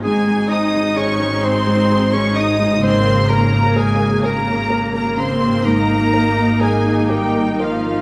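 A lush, roomy recital-hall sound opens this longing, bittersweet cinematic excerpt in Ab major, moving at a slow, rubato 43 BPM in 6/8 over a held Ab chord that shifts to Eb/Ab at 5.7 seconds. A rich, distant violin section carries the melody with vibrato while a clear, distant solo clarinet and a smooth-topped second violin section in the background add second lines. Beneath them, an intimate, felt-muted upright piano and a vibrato-laden viola section give accompaniment, a very quiet, dark French horn section holds sustained chords, a ringing concert harp plays fingerpicked arpeggios, and a woody double bass section on a low Ab is joined by a close cello section from 0.1 seconds.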